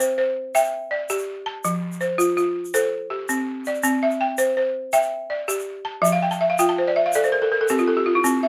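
A balafon and a tube shaker start together at 0.0 seconds in this short, joyful fragment of West African string and xylophone music, cut from a longer piece and set in a straight 12/8. The balafon sits up front, playing arpeggios across a broad span of its range, its woody, dry tone struck with hard rubber mallets and carrying a distinctive buzz. Its sound has a vintage, band-limited character that gives the passage a warm, old-recording feel. Behind it, the tube shaker adds a grainy, bright texture at a much lower level, heard in a small acoustic room. The harmony sways between C and F, and from 6.0 to 8.2 seconds the balafon breaks into a fill. A moderate studio reverb surrounds the whole ensemble.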